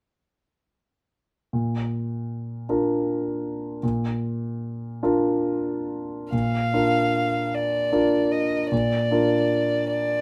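Classical slow romantic movement for piano trio in Bb major, serene and tender, unfolding in a rubato 6/8 at roughly 44-53 BPM in dotted quarters. A concert grand piano opens the accompaniment at 1.5 seconds, its tone warm and natural with deep bass and audible action noise, sitting intimate and up front. At 6.3 seconds a single dark violin takes the melody, bowed sul tasto with light vibrato, a soft attack and a smooth top, heard close in a moderate studio reverb, in this excerpt cut from a longer piece.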